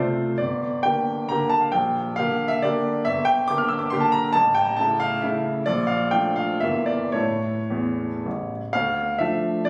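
A triple-time dance in 3/4 with dotted rhythms sets the pulse, moving with free rubato anywhere between 103 and 146 BPM in this short romantic classical fragment cut from a longer piece. A solo baby grand piano carries everything from 0.0 to 9.7 seconds, ranging from G1 up to F6, its tone clear, intimate and up front, with the action noise of the instrument audible beneath the notes. The harmony opens on G minor, passes through a lush Gm13 and an A chord, touches Bbmaj7 and a diminished chord, then returns to A before resolving onto D minor at 8.7 seconds, with the music settling into D minor from 3.1 seconds. The mood is nostalgic and wistful, like a half-remembered waltz. The sound carries a moderate recital hall reverb with a phone-in-the-room character, giving the natural piano a sense of being overheard from a seat nearby.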